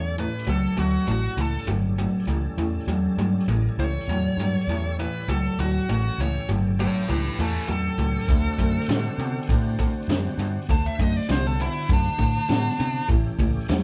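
Played live together in one large studio room with moderate reverb, this raunchy, gritty blues rock and southern rock passage moves at 100 BPM in a straight 4/4, sitting in A mixolydian and shifting from A7 to D7 at 8.3 s before returning to A7 at 13.1 s. An up-front, double-tracked overdriven guitar drives a biting low riff over a dark, round, foam-muted picked bass, while a nasal lead guitar with a parked wah carries the melody and a thick tonewheel organ holds chords in the background through chorus vibrato and a slow rotary speaker. The vintage acoustic drum kit joins at 8.3 s with a punchy kick, medium-tuned snare and hi-hat, its muffled, rolled-off lo-fi sound placed close to the listener.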